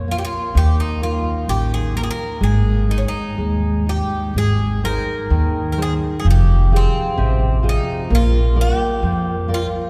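Tender and nostalgic, this short excerpt from a longer fado-style ballad moves in a slow, rubato 2/4, letting each phrase breathe. A Greek bouzouki carries the melody with a bright, metallic tone, its picked double strings, some doubled at the octave, ringing over the ensemble. Beneath it, a nylon-string guitar fingerpicks a deep classical accompaniment on fresh strings, while a woody upright bass, played pizzicato on steel strings, sits up front in the mix. All three play together from the opening until close to 9.9 seconds. The harmony drifts from minor shadings into a second section that opens on an Ab major chord at around 4.3 seconds. A long, cathedral-like reverb suggests a church or concert hall, wrapping the trio in a spacious, lingering glow.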